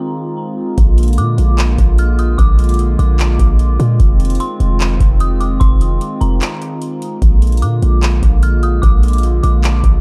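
A hollow, flute-like pad sustains chords while an eerie, inharmonic FM bell carries the high melody through chorus and tape echo, opening this hazy, spacious excerpt of atmospheric cloud-rap at 149 BPM in a half-time feel, tuned to A4 = 441 Hz. At 0.8 seconds a deep, boomy 808-style bass and a booming analog drum machine arrive up front, with a deep kick, metallic hi-hats and handclaps, as the harmony moves between Fm7 and Bb7. A brief break falls at 6.4 seconds, and the dry, dark mix keeps the low end warm while the pad pumps under the sidechain.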